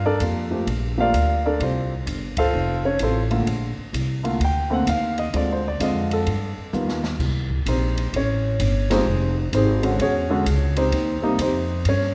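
Relaxed and playful, this excerpt of a jazz piano trio swings at 129 BPM in 4/4, with a grand piano up front carrying the melody over a woody, bright pizzicato upright bass and an open acoustic drum kit that enters at 0.2 seconds with a dark, smooth sound, boomy kick and rolled-off top. The harmony moves from Gm9 through Csus4, F and Bb toward Dm7b5 and G7b13, with band accents at 2.3 and 8.8 seconds and a drum fill leading into a new section at 7.2 seconds that passes through Cm7, Fmadd9 and E69 before settling on Eb6. A moderate concert hall reverb gives the trio a spacious, resonant setting.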